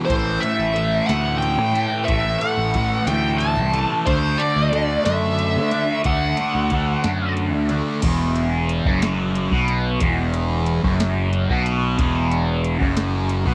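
The recording sits in a light digital ambience, with two electric guitars up front in the mix. This trippy, dark psychedelic rock excerpt in 6/8 is cut from a longer piece. A thick, bright fuzz guitar, double-tracked and treated with distortion and phaser, plays a riff throughout. Above it, a smooth, shadowy lead guitar carries an overdriven melody colored by wah and tape echo, starting almost at once and stopping at 7.3 seconds. A round, punchy fingered bass with overdrive holds the bottom, while a soft vintage rhythm box supplies a deep kick, tonal snare, metallic hi-hat and crash, all dry and tape-warm. The harmony moves from A5 to D, then settles on E5 as a new section begins at 8.0 seconds.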